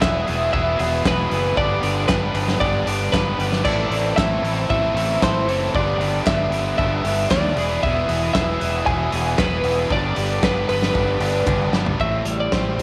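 A straight 4/4 pulse at 115 BPM drives this restless, bittersweet indie rock passage in A minor, where a loose acoustic drum kit with a punchy kick, fat snare and dark cymbals pumps in the studio room beneath a growling, overdriven fingered bass, a crunchy picked guitar riff coated in lush chorus and slapback echo, a second distorted guitar sitting in the background, and a clean, compressed twelve-string electric melody with its own slapback, while very quiet, hollow group handclaps hover until 11.6 seconds, the chords move from E through G and Am, a drum fill at 11.5 seconds leads to a closing Am7 at 12.0 seconds, and a moderate echo chamber reverb lends the whole a studio ambience.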